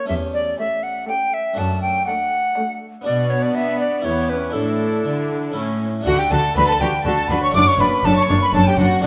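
Lively and festive, this passage from a baroque-style concerto movement moves at 121 BPM in a straight 3/4 in D major, tuned slightly above standard pitch at A4 = 441 Hz. A mellow alto recorder carries the melody up front, its pure, wooden tone shaped with vibrato, soft attacks and rolled-off highs for an expressive solo voice. A brilliant, mid-forward harpsichord with plucked octave strings accompanies from the start, and a rich cello section anchors the bass from 0.1 seconds. At 0.6 seconds the upper strings join: a dark, nasal violin section also takes up the melody up close, a second violin section adds a smooth-topped line in the background, and a warm viola section fills the middle, all with period-style gut-string tone and light vibrato. From 6.1 seconds, as the harmony settles onto D, a studio double bass section deepens the low end with its own reedy bowed sound, and moderate recital hall reverb gives the ensemble a natural sense of space.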